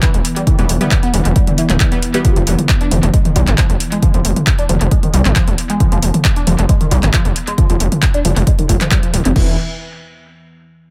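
A screaming, guitar-like overdriven synth lead plays a riff through this dark, driving peak-time techno excerpt, shaped by distortion, phaser, analog chorus, dub echo and sidechain pumping. Beneath it a punchy electronic kick joins a gritty, saturated synth bass that sits up front with its own sidechain pumping, while a techno drum kit of crash cymbal, handclaps, tape-warm hi-hats and toms carries analog delay and a deep, moody ambient pad drones very quietly. A detuned supersaw stab with pumping and analog delay appears from 0.6 to 2.2 seconds over an E minor chord, all within an echo-heavy mix with light reverb.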